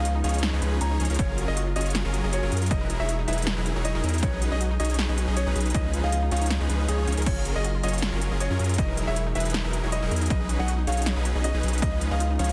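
A half-time 4/4 groove drives this lush, playful future bass excerpt, built on a big-room dance kit of punchy snare, crisp hats and crash re-recorded in a large room, joined at 1.2 seconds by a layered, overdriven electronic kick. A deep, saturated sine sub bass sits up front and, along with huge, bright detuned supersaw chords, pumps under sidechain, while a clear, intimate concert grand piano with audible action noise carries the melody through tape echo and a warbling, wave-folded unison pluck arpeggiates in the background. Behind them a veiled, con sordino string section holds very quiet sustained chords, moving through extended harmonies like F#maj9 and Emaj9#11 under light reverb and a dense, heavily limited master.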